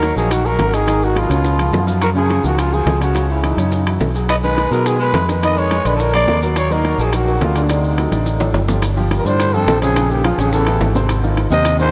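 Afro-Cuban jazz in Eb minor at a fiery, sultry 211 BPM, this short cut features a raspy, growling trumpet carrying the melody over a distant baritone saxophone second line with scooped notes, both touched with delay, while a short-sustain baby grand piano comps, an up-front fingered electric bass anchors the low end, and quiet low-tuned bongos, ringing metal-shell timbales and grainy maracas drive the groove, with a drum fill at 8.1 seconds leading into a new section, all bathed in a huge, dreamy reverb.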